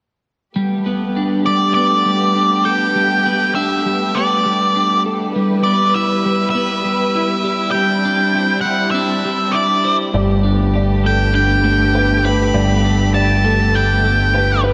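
A dark, fuzzed-out octave lead guitar with distortion and analog delay carries the melody from 1.5 s in this euphoric, cinematic rock excerpt. Beneath it, a bright, twangy twelve-string electric guitar plays arpeggios through lush chorus and delay, and a distant, smooth symphonic string section holds sustained chords. At 10.1 s a growling, overdriven picked electric bass and a soft, felt-muted upright piano with delayed arpeggios join, in a dreamy mix soaked in wet hall reverb.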